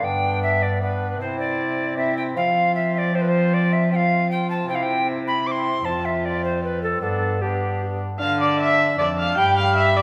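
The recording sits in a wet, resonant hall with a reverb tail of about 1.9 seconds, which gives this short cut from a longer piece the air of a church or concert venue. It is a courtly, stately renaissance-style consort dance in 3/4 at 154 BPM with a straight feel, set in G mixolydian and moving through G, C, F and D minor harmonies. An alto recorder carries the melody up front, its pure, woody tone marked by a crisp, chiffy attack and vibrato. Beneath it, a single bowed viola plays a second line with a rich, nasal gut-string sound and light vibrato, while a solo bassoon fills in the accompaniment with a soft attack and gentle vibrato. A bowed cello, reedy and period-styled, anchors the bass, and the four parts play together throughout, with the opening phrase starting again at 8.2 seconds.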